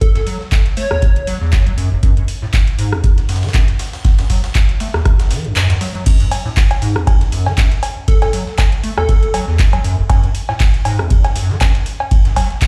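A squelchy, resonant acid bass riff with overdrive, lush chorus, sidechain pumping and tape echo drives this trippy acid house excerpt in F# minor at 119 BPM, swung on the sixteenths over a deep, up-front electronic kick. A booming analog drum machine with metallic hats, cowbell, handclaps, rim clicks, ride and crash cymbals plays throughout, while a gritty, compressed, high-passed breakbeat kit of hi-hat and snare sits in the background. A punchy, detuned square-wave lead with tape echo adds brief catchy phrases, and the kick drops out at 5.6 seconds under a band accent before the drop lands at 6.1 seconds, the mix heard through a big sound system in a bare room with large studio reverb.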